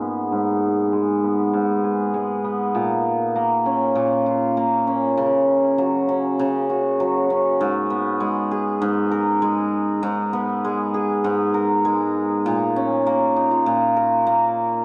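A straight 4/4 pulse at 99 BPM carries this delicate, intimate folktronica fragment in G# dorian, cut from a longer piece. A solo hammered dulcimer sits up front for the whole 14.8 seconds, its shimmering, ringing tone spanning G#2 to A#4 and trailed by tape echo. The opening passage moves through G#m, A#m and C#sus4 beneath a filter sweep that runs until 7.6 seconds, where a second section begins on G#madd9 before returning to A#m. A moderate echo chamber reverb with a 2.2-second decay surrounds the instrument. The production is dark, warm and low-pass filtered, lending the whole a close feel, with the tuning set to A4 = 436 Hz.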